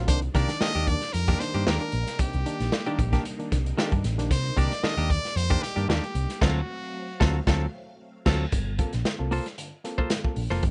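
Funky and cool, this short funk clip rides a straight 4/4 groove cut from a longer piece. A crunchy breakbeat kit sits up front with a tight kick, gritty saturation and dark cymbals, alongside a round, amped picked bass that anchors the low end. A semi-hollow electric guitar adds clean, compressed fingered accompaniment, while a barky, reedy electric piano with light overdrive and tape echo punches in with stabs, dropping out at 4.3 seconds and returning at 8.5 seconds. Over the top, a brilliant trumpet carries the melody with vibrato and scooped notes until 7.4 seconds, backed by a very quiet, swirling string machine holding phased, slow-attack chords. A band accent on a D7#9 chord arrives at 6.4 seconds before the harmony settles onto Gm11, all captured in a rough, dry home-demo sound with a rolled-off top.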